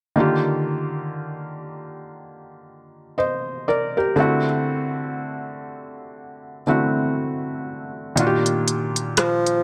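A soft, intimate felt-muted upright piano with audible action noise and short sustain carries this tender contemporary R&B excerpt through swung Ebmaj7 and D7 chords in a small, lightly reverberant room, tuned slightly flat, before an electronic, tape-warm drum kit adds smooth hi-hat and rim click at 8.2 seconds and a mellow, classical-style bassoon with light vibrato enters up front on a single solo note at 9.2 seconds.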